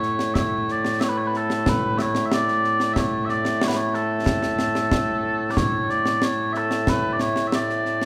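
Proud and ceremonial, this short passage of Scottish traditional pipe music moves at 92 BPM in a straight 2/4, set in A major. Mellow small bagpipes carry the melody from start to finish, their sweet, continuous tone colored by vibrato and placed up front as the solo voice, ranging from A2 to E5. Concert snare drum and concert bass drum play throughout, acoustic and close, with dark cymbals and a dry presence that also sits up front. A short opening phrase gives way at 5.6 seconds to a return of the same material, and the clip breaks off at 8.1 seconds, cut from a longer piece. A moderate recital hall reverb surrounds the performance, giving it the spacious ring of a church or concert hall.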